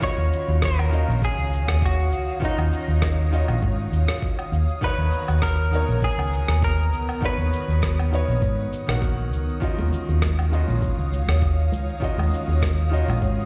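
A smooth, relaxed sunset chillout groove in Eb minor opens at once, with a bright, clean semi-hollow electric guitar carrying the melody through analog chorus and digital delay, over a clear concert grand piano whose deep bass rounds out the accompaniment. An ethereal, airy pad with a slow attack and long release holds sustained chords, softened by ensemble chorus and its own reverb. At 100 BPM with a gentle swing on the sixteenths, a gritty, thumpy electronic kick and an overdriven kit of shaker, rim click and woodblock set a compressed, sampler-style pulse, while a dark, round hollow-body bass sits up front from 0.2 seconds. The guitar line stops at 8.4 seconds, and bright, dry bongos and congas slip in at 9.8 seconds, tucked in the background. The harmony drifts from Ebm9 to Bmaj7 and back, all heard through a large, reverberant room in this short cut from a longer piece.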